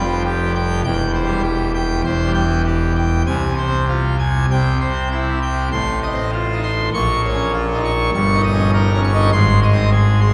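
In a straight 4/4 at 100 BPM, this short portion of a classical organ toccata in F minor sounds majestic and stormy, cut from a longer piece and lasting 10.3 seconds. A solo pipe organ plays full organ from deep pedal to high treble, its mixtures giving a brilliant, baroque voicing with audible chiff, placed up front. A wet church reverb with a 3.8-second decay surrounds it as the harmony moves from a tense opening chord toward Fm, Bbm and finally Ab.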